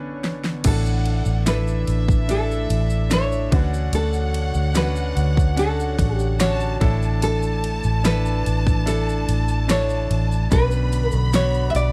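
A dry, close 1970s-style studio sound frames this heartfelt pop ballad excerpt at 73 BPM, where a full-bodied fingerpicked nylon-string guitar carries the melody over a brilliant concert grand piano and a soft, breathy pad with chorus in the background, while a punchy pop drum kit opens with a fill, a dark, foam-muted fingered electric bass sits up front from 0.6 seconds, a focused violin section with vibrato adds a high second line from 0.7 seconds, and a grainy tube shaker sits quietly beneath, moving through Bmadd9, Asus4 and Dmaj7.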